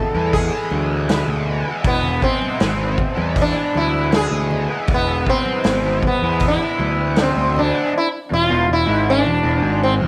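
Trippy and hypnotic, this psychedelic rock excerpt is led by an up-front sitar melody whose buzzing, shimmering tone is trailed by slapback echo. Beneath it, a double-tracked, overdriven stack guitar riff churns through a flanger, and a fuzzy picked bass sits forward in the mix. A vintage kit with a punchy kick and rolled-off top pumps in a small room, with very quiet, close congas struck with hard hands. The drums drop out at 7.4 seconds and the congas at 7.7, leaving sitar, guitar and bass for the closing stretch from 7.9 seconds.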